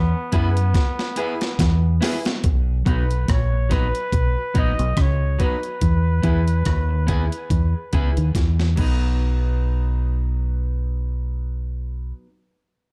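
Warm and laid-back, this roots reggae excerpt in B major moves at an easy 71 BPM in 4/4 with a gentle sixteenth-note swing, drifting between E and B chords. A clear flugelhorn with vintage vibrato carries the solo melody through a tape echo until about 8.3 seconds, while a clean, picked electric guitar plays a low riff beneath it. A deep, round dub bass sits up front and holds the bottom for the full 12 seconds, joined by a gritty, compressed sampler-style drum kit with a thumpy kick, rim clicks, hi-hat and crash, which plays two fills and falls away at 9.0 seconds. A second, very quiet fingered guitar adds accompaniment washed in tape echo, and a bright, woody upright piano drops stabs from the background. The dark production carries light reverb, and the drums sound re-recorded in a small room.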